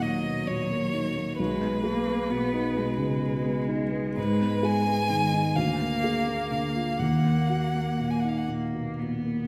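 A bright, intense violin carries the melody up front, its airy bow and close tone singing high above the ensemble in this slow, yearning movement for piano trio. Beneath it, a rich cello plays a second line with soft attacks and expressive portamento, and both string players colour their notes with vibrato. A dark, mellow baby grand piano supplies the accompaniment, sitting slightly louder than the strings, with an intimate, natural sound in which the action noise is audible. The music moves in a rubato 6/8 at about 37-45 BPM in Eb minor, with an elegiac mood as the harmony turns from Ebm through Abm to a Bb7 before settling back on Ebm. The trio is heard from further back in a wet scoring-stage reverb, and the violin drops out at 8.5 seconds while cello and piano carry on to the end of this fragment of a longer piece.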